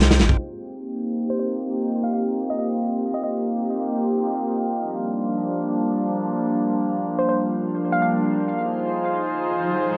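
Drum and bass at 163 BPM in C minor, this short cut from a longer piece feels frenetic yet nostalgic, moving through Cm7, Gm7 and Fm7. A glassy, drifting harmonics texture sits in the background from the start, calm and bright, with chorus and its own reverb. At 0.4 seconds a warbly, tape-like pad enters up front with sustained, detuned chords that carry a lo-fi 12-bit sampler grit, while a filter sweep runs through to the end. A hollow, bouncy square-wave pluck carries the melody in short phrases, bright and detuned with chorus and dub echo. An electronic riser arrives at 9.4 seconds. The whole recording has a dry, gritty hardware character with transformer saturation, vinyl crackle and a low-pass filter, set in a lush hall reverb over a small room ambience.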